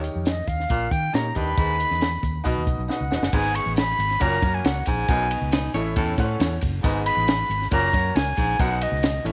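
A breathy, close-miked flute carries the melody up front from 0.3 seconds in this uplifting, danceable excerpt of 1960s-style soul, while a raspy, gritty baritone saxophone plays a low riff beneath it. A round, foam-muted fingered electric bass and a compact cocktail kit with a punchy kick, high-tuned snare and dark cymbals drive the straight 4/4 groove, joined by a natural-sounding grand piano in accompaniment, a jingly tambourine in the background, and a drum fill at 2.9 seconds leading into the second section. A twangy, clean electric guitar riff surfaces briefly at 5.5 seconds, and the mix sits in light reverb with small-room ambience.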